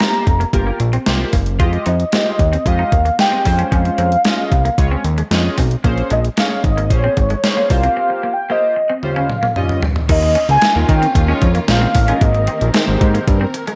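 A polished, lightly reverberant mix puts a crisp, thumpy 8-bit drum machine with overdrive and gated reverb and a fat, saturated analog bass up front, setting a slick, late-night early-eighties boogie funk groove cut from a longer piece. A velvety, detuned synth lead with chorus and slapback echo carries the melody over a glossy, chorused polysynth, while a clean, compressed semi-hollow electric guitar plays a picked riff in the background. A drum fill at 9.0 seconds leads into a new section at 10.1 seconds, where a lush, distant string section enters with sustained bowed chords.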